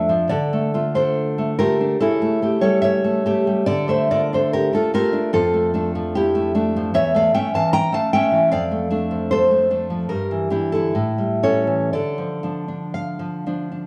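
Set in a moderate recital-hall reverb with a touch of studio ambience, this brief cut from a longer romantic piece for solo classical guitar has a wistful, intimate mood and a rubato feel in 2/4. The nylon-string guitar sits up front, full-bodied and fingerpicked, with audible finger squeak as it ranges from its low E2 to a high Bb5 across the full 13.9 seconds. Its minor-key harmony circles between the home chord and its dominant, then passes through a half-diminished chord at 10.1 seconds before settling home at 11.9 seconds.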